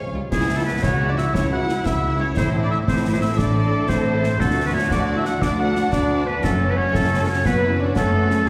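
Cinematic heroic adventure score in a swashbuckling mood, moving at 118 BPM in a straight 12/8 in C# Phrygian over a C#m, Am, D and F#m progression, in this short excerpt cut from a longer piece. A lush violin section carries the vibrato-rich melody while a second, more distant and intense violin section adds a supporting line. Sombre French horns hold sustained chords, smooth violas accompany, and rich cellos and double basses anchor the bass. From 0.3 s a clear, vintage-toned solo oboe sits up front with its own line, and a close, dry concert snare, clash cymbals with a dark edge and concert bass drum drive the rhythm, while the orchestra sounds set further back in a wet scoring-stage reverb.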